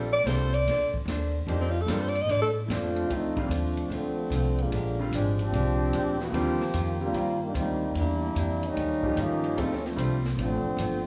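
Brassy and swinging, this big band swing excerpt opens with a breathy, intimate alto saxophone solo with scooped notes up front until 2.5 s, then a trombone section with light vibrato takes over from 2.6 s, backed by a growly pizzicato upright bass, a punchy acoustic drum kit, a clear grand piano and a dark, clean hollow-body jazz guitar in the background, all set in a moderate recital hall reverb.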